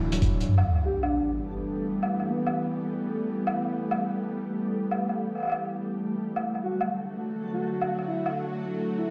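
Heard through a big sound system in a bare room with a large studio reverb, this heavy, spacious half-time drum and bass cut from a longer piece moves at 166 BPM in E minor, opening with a brief felt-muted upright piano arpeggio with dub echo and a deep, mellow 808-style bass note, then an electronic sub drop at 0.5 seconds, while a tense, nasal, string-like drone with vibrato and sidechain pumping and a reversed, dreamy, granular swelling texture sustain throughout, dark, gritty hi-hat and woodblock sit up front, and a breathy, flute-like synth lead with subtle chorus and digital delay sings its melody early and returns at 6.6 seconds, just after the harmony shifts from Em to D.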